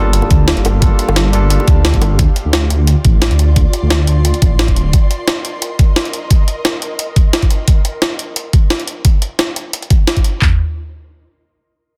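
This lush, soulful liquid drum and bass excerpt opens on an impact, with a bright, barky tine electric piano carrying delay and a deep, rumbling detuned saw bass that sits up front, saturated and dark. An ethereal, airy pad follows almost at once, its slow-attack chords full-bodied and washed in ensemble chorus and built-in reverb, breathing with sidechain pumping, while a barely audible sub drop slips underneath. Two drum kits drive the music: an overdriven, layered electronic kit with a knocking kick, handclaps and toms, and a gritty, pitched-up sampler-style jungle kit with a high-tuned snare and hi-hat, compressed and heard in a large room. Tight, high-tuned acoustic bongos sit close and dry in the background, and the electric piano stops at 2.2 seconds as the harmony moves from Gm7 through Dm7 to Cm7. The bass ends at 4.9 seconds and the pad at 7.6 seconds, leaving the drums to carry on under a dense, heavily limited modern master.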